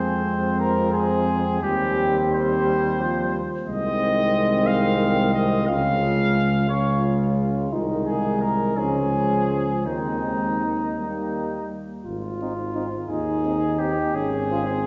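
A clear trumpet with vibrato carries the melody up front, reaching from Eb4 to F5 and sounding distant and roomy in this solemn, heroic classical brass quintet. Moving freely in 6/8 with rubato at about 54-61 BPM in dotted quarters, the piece opens on F minor and settles into Ab major from 3.7 s, passing through Db and Eb before landing on Ab at 12.1 s, where a new section begins and closes on a Dbmaj7(no3)/Ab chord at 14.1 s. A mellow flugelhorn sings the second line beneath, while a brilliant trombone and a French horn with a smooth top and light vibrato fill out the accompaniment from the background. A warm tuba with light vibrato anchors the bass up front, its tone also distant and roomy. The quintet is heard from further back in a wet concert hall, a fragment cut from a longer piece.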